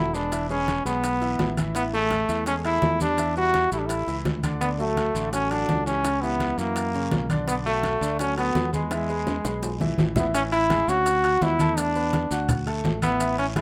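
A brilliant, up-front solo trombone with vibrato carries the melody from the start over bright baby grand piano and a dark, punchy fingered electric bass in this festive, danceable salsa at 168 BPM in A major, while close, dry, low-tuned congas with a thick skin lead a percussion bed of round, close and dry bongos, ringing saturated timbales, grainy, close and dry maracas and a raspy, band-limited guiro in the background, a drum fill at 8.9 seconds ushering in a new section at 10.3 seconds, all within a small, wet room and a rough home-demo mix.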